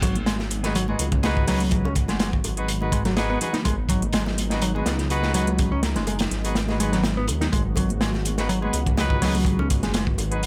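A crunchy breakbeat kit drives this swaggering, raw breaks excerpt at 124 BPM in G# minor, its punchy kick and medium-tuned snare sitting up front with a dark, saturated, gritty character and a rolled-off top, while a metallic, tape-softened electronic hi-hat layers over it with a light 16th-note swing. Underneath, a deep, rumbling detuned saw bass beats with tube saturation, and a bright, direct picked electric bass plays a riff higher up, colored by tube drive and tape echo. A swirling, evolving analog pad holds sustained chords in the background, its phaser and chorus shimmering as sidechain pumping makes it breathe with the groove. At 0.6 seconds a punchy horn section enters with pop-style stabs, carrying light vibrato, vintage 12-bit sampler grit and tape echo. Very quiet bongos and congas add hard-handed, acoustic accents, and a small room ambience wraps the whole excerpt, which opens on a G#m7 chord.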